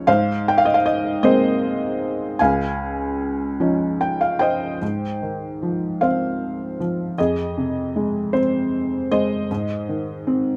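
A felt-muted upright piano carries this tender classical miniature alone, its mellow, intimate tone sitting up front with audible action noise in a small, moderately reverberant room. The slow 6/8 lilt at 51 BPM moves with free rubato in Ab major, a short piano fill at 3.6 seconds leading into a new section at 4.8 seconds. The harmony drifts through gentle added-note and seventh chords before coming home to Ab, in a fragment cut from a longer piece.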